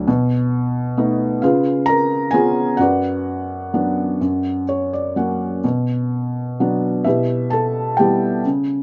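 Melancholic and reflective, this short classical excerpt from a longer piece features a lyrical solo felt-muted upright piano in B minor, drifting in a rubato 6/8 at about 43 beats per minute. The piano sounds soft, mellow and intimate, sitting up front under close, detailed microphones with light reverb, and ranges from F#2 to A#5 across the full 8.8 seconds. Chords move from B7 and C#7 through Bm/F# to F#, where a brief piano fill appears at 4.2 seconds, before settling on Bm and Em/B.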